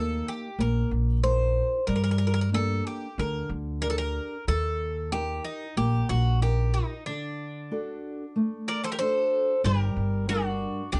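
The recording sits in a dark, warm small room with a moderate, short reverb, and its top end is gently rolled off. This is a moody, bittersweet Greek folk piece for a bouzouki band, cut from a longer performance and moving at 93 BPM in a straight 4/4. Up front, the Greek bouzouki carries the melody with a metallic, double-strung bite, some of its strings doubled at the octave. A fingerpicked steel-string acoustic guitar with old, woody-sounding strings plays the accompaniment, while a prominent upright bass plucks the low end on steel strings. The harmony moves through Eb, Gm and D, and at 8.7 seconds a bright, picked bowl-back mandolin slips in quietly with a second line, just before a new section begins on Gm at 9.6 seconds.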